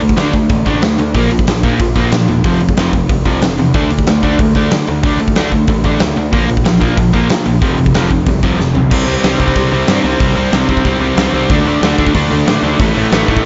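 A big acoustic rock drum kit sits up front in this raw, angry punk rock excerpt, its punchy kick and fat snare ringing in a bright stone room alongside crash cymbal, hi-hat and toms. At a straight 186 BPM in 4/4 and D minor, two picked electric guitars play riffs throughout. An overdriven one sits forward in the mix, while a distorted, compressed one stays further back. A growly, fuzz-laden bass, picked and overdriven with a direct-and-amped tone, also sits in the background beneath them. The power chords cycle through D5, Bb5 and F5, and then a drum fill leads into a new section at 8.9 seconds built on C5, D5 and A5. The mix carries little reverb, its top end stops at 7.7 kHz, and the piece breaks off at 13.4 seconds, cut from a longer track.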